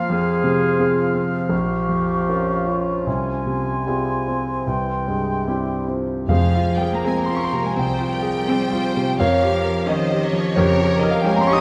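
A clear, deep-voiced concert grand piano carries the melody through this passionate, tragic romantic movement for piano and orchestra in F minor, moving with rubato at 72-92 BPM, first over mellow woodwind lines from clarinet, cor anglais, bassoon and an airy, hollow flute, then from 6.3 s over lush bowed strings (warm and rich vibrato-laden violin sections, smooth cellos, focused double basses and a very quiet viola section that joins shortly after) with brief hard-mallet timpani, set in a wet scoring-stage reverb in this fragment of a longer piece.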